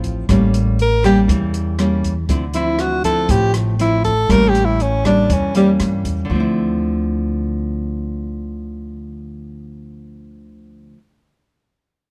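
A straight 4/4 bossa nova pulse at 120 BPM sets a wistful, melancholic mood in D minor, carried by a dark, small-room jazz kit of hi-hat, boomy kick and rim click that plays until 6.2 seconds. Up front, a fingerpicked classical nylon-string guitar and a woody pizzicato upright bass move through A7b9 and Dm9 chords. From 0.8 to 5.7 seconds, a mellow, breathy tenor saxophone takes a jazz solo with light vibrato and scooped notes, in this dry, intimate fragment of a longer piece.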